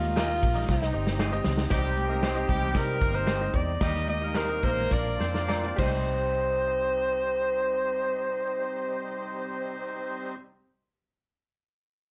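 A driving, straight 4/4 groove at 99-117 BPM sets this urgent, uptempo 1960s-style soul clip in C minor, cut from a longer piece, with a natural country drum kit of punchy kick and medium-tuned snare up front, playing fills at 0.7 and 4.9 seconds before dropping out at 5.9 seconds, while very quiet, high-tuned congas sound from a distant large room until 6.3 seconds. A foam-muted, round fingered electric bass anchors the low end with a dark, amped tone as the tempo slows from 1.7 seconds. Up front, a tenor saxophone carries the melody with subtone, vibrato and scooped notes in a roomy jazz style, joined at 1.7 seconds by a clear, tight horn section in octave doubling with light vibrato. In the background, a brilliant baby grand piano accompanies, a gritty, overdriven tonewheel organ holds thick sustained chords with percussion and chorus vibrato, and a slightly broken-up, lo-fi guitar through a small old amp adds compressed stabs with spring reverb. 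The harmony moves through Eb, Cm and Bb inside a moderate club reverb.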